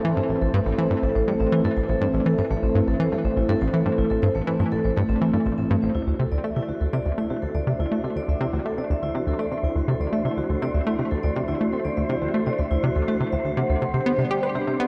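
Soaked in a lush hall reverb, this dreamy piece of sequencer-driven ambient space music moves at 122 BPM in a straight 4/4, luminous and expansive, tuned to A4 = 444 Hz. A punchy, funky analog bass riff with a sawtooth bite and tape echo sits up front, while a sweeping, detuned pad with chorus holds evolving chords and a metallic, ringing vibraphone spins arpeggios through its own tape echo. The harmony moves from Am to Dadd9 as the second section begins and the pad fades in across it. From 6.7 seconds an airy, breathy wind-like noise texture drifts in above, and the harmony later settles on Csus2.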